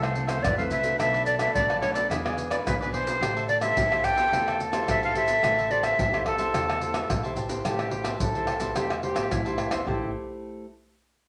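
A straight 4/4 samba-and-choro groove at 108 BPM, lively yet bittersweet in A minor, rides on up-front maracas, pandeiro, tamborim and deep surdo played with soft hands in a live room, while a bright, breathy jazz flute with vibrato and a chiffy, crisp attack carries the melody until 7.3 s over a straight-toned, close-miked concert flute second line, a picked cavaquinho and a fingerpicked classical nylon-string guitar set in the background, and a woody pizzicato upright bass, with the harmony passing through Fmaj7, Bm7, E7 and Am7 in a wet studio reverb.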